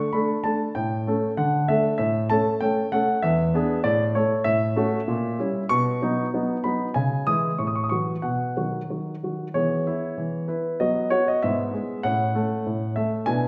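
Classical-period piano sonatina in a graceful, elegant mood, where a polished, present grand piano plays alone in 2/4 with rubato, spanning low bass to bright upper register across this short passage cut from a longer piece, heard from further back in a recital hall whose wet reverb lingers around every phrase.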